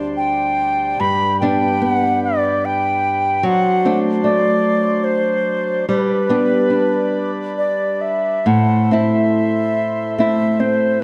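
Dark production with a moderate stage reverb frames this mournful, haunting Celtic slow air in 3/4, drifting in rubato at 67-76 BPM in A dorian, where a bright, reedy wooden baroque flute with a crisp attack and pure, straight tone carries the melody up front from 0.2 s, a small, woody fingerpicked nylon-string guitar with old strings plays the accompaniment, and a mellow, dry, close-miked accordion holds full, rich sustained chords beneath them throughout, even as the harmony turns to Am at 8.5 s in this short cut from a longer piece.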